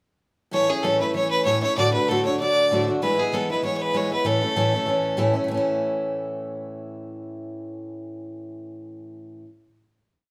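Celtic folk reel in A major at a cheerful, rollicking 194 BPM with a light swing, where a biting, intense fiddle with light vibrato carries a motif-based melody in period phrases from 0.5 to 5.2 seconds over a bright, picked steel-string acoustic guitar strumming open chord shapes, both up front and played live in one room with a wet, large studio reverb, before the guitar's final chord rings on until 9.5 seconds.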